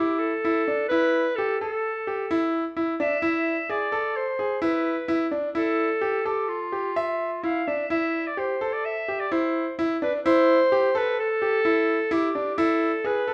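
Contemporary instrumental music in an odd 5/4 metre at 129 BPM, this hypnotic, restless excerpt pairs a soft-attacked, vintage-toned clarinet carrying the melody between F4 and F5 with a brilliant concert grand piano spinning arpeggios that carry a deep bass. Both sit up front for the full 13.3 seconds, the clarinet in a classical solo style while the polished piano circles between a rootless Dsus2 and E7 before landing on E at 12.6 seconds. Light reverb surrounds the pair, and a faint mains hum lingers underneath.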